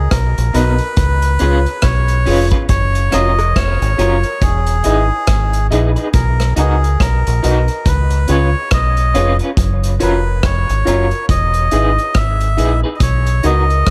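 A round, punchy fingered electric bass sits up front in this hazy, spacious dub reggae cut from a longer piece, carrying the lilting swung groove beneath a reedy, breathy melodica melody with dub echo, a vintage drum kit of tight kick, hi-hat and rim click, a twangy, slightly broken-up electric guitar with tremolo and dub echo, background stabs from an intimate grand piano also treated with dub echo, and a very quiet cowbell tap at 3.4 seconds, all in light small-room ambience over a Bmaj7, C#7, F#maj7, Emaj7 progression.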